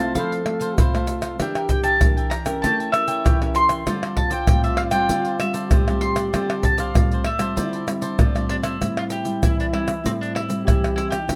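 Up front in the mix, a close, dry percussion section of egg shaker, pandeiro, tamborim and deep surdo drives this yearning, bittersweet fragment of samba and choro, cut from a longer piece in D minor at 97 BPM in a straight 4/4, with the percussion joining at 0.2 seconds. Over it, a mellow, round mandolin carries the melody with picked double strings, touched by plate reverb. A breathy trombone plays a present, jazz-style second line with vibrato and scooped notes. A woody, full-bodied nylon-string guitar with old strings is fingerpicked in classical style beneath them, while a crisp, picked cavaquinho adds accompaniment until 8.8 seconds. The harmony moves through Fmaj7, Em7b5, A7b9 and Dm11 before settling on Am7 as a new section begins, all captured with close, detailed microphones in a moderate studio room.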